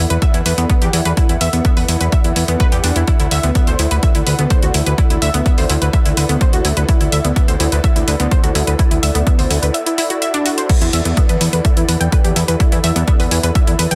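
A dry, dense and heavily limited mix carries this dramatic, melancholic melodic techno passage, cut from a longer piece, where an overdriven, up-front electronic kick and a punchy analog drum machine with gritty crash and hi-hat drive beneath a fat, nasal, saturated analog bass and round, bright analog pluck arpeggios with chorus and digital delay, both pumping against the kick, while a soft, breathy pad with chorus sits mellow in the background as the harmony moves from E7(no3) to D and back, with a brief break from 9.7 to 10.7 seconds.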